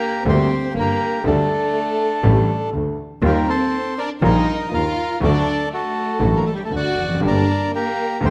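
A reedy, dark bandoneon carries the melody up front in this tense, dramatic tango fragment, shadowed by an intimate chamber violin section with light vibrato and a soft attack, while a natural-sounding grand piano accompanies and a distant, earthy bowed double bass anchors the low end from 0.3 seconds, all in a moderate recital-hall reverb that gives the rubato feel a sense of space.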